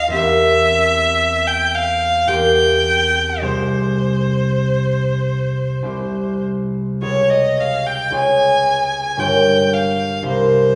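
A slow, rubato 3/4 at 49-57 BPM carries this elegiac, solemn romantic classical duo, where a rich, smooth bowed violin with even vibrato sings the melody up front while a mellow, ringing fingerpicked concert harp accompanies through chords moving from C7/E to Fm/C, C, Db and Gm7b5, all set back in a recital hall with a long, wet reverb in this brief passage cut from a longer piece.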